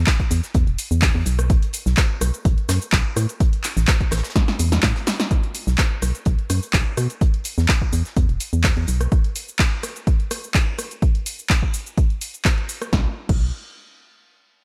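Bittersweet and soulful, this 126 BPM piano house excerpt opens on a drop driven by a hollow, dark, organ-like FM bass with sidechain pumping, a tape-warm, punchy electronic kick and an overdriven analog drum machine of crash, handclaps, hi-hat, rim click, shaker and snare, with a dry, very quiet 70s kit adding a fat snare and hi-hat beneath; a drum fill arrives at 4.4 s, and the bass drops out at 9.1 s before returning at 12.9 s, all in a bright 1980s-style digital production with little reverb.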